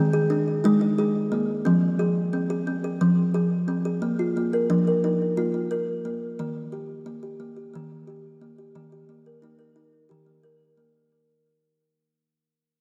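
A lone kalimba carries this short, gentle world meditation piece. Its fingertip plucks sound woody and mellow, with a hollow box resonance, and it sits up front in the mix from Eb3 up to Bb4. The music moves in 7/8 with a straight feel, drifting through Ab5, Fm, Bb5 and Eb chords. A delay trails the kalimba's short notes, and a lush hall reverb soaks the whole mix in a dreamy wash. Cut from a longer work, the 11.1-second passage fades out from start to finish.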